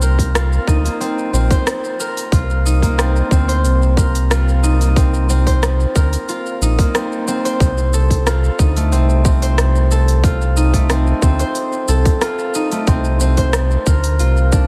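A fingerpicked concert harp opens this mystical, meditative stretch of organic downtempo, its ringing arpeggios carried on a touch of delay, alongside a round, deep analog bass that sits up front with a dark, sustained tone and a sidechain pumping. From the start, an electronic afro-pop kit adds smooth hi-hats, a rim click and shaker in a small room, set low in the mix. At 0.2 seconds a tight, overdriven electronic kick joins, re-recorded in a large room. The harmony rests on Cm7 before moving to F7/C at 7.6 seconds. Light digital reverb gives the whole a soft sheen, and the passage is cut from a longer piece.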